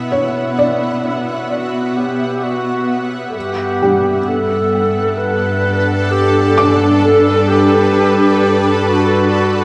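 A shimmering ambient pad stands out at the front of this melancholic, reflective ambient excerpt, its detuned, ethereal chords carrying a bright octave-up shimmer, chorus and long release as they fade in across the full 9.6 seconds. Alongside it an alto flute carries the melody in a pure, crisp-attacked tone with vibrato, bathed in shimmer reverb and a diffuse ambient delay while it too fades in. A felt-muted upright piano enters at 0.1 seconds with soft, intimate arpeggios, its short sustain and audible action noise set in the same shimmer and delay. A studio cello section supplies the bass with an earthy, nasal bowed sound and light vibrato, fading in from the opening. At 65 BPM in a straight 4/4, the harmony moves from Bm to Gmaj7 at 3.4 seconds, and the whole passage sits in a concert hall reverb with a touch of small room ambience and the texture of cassette tape.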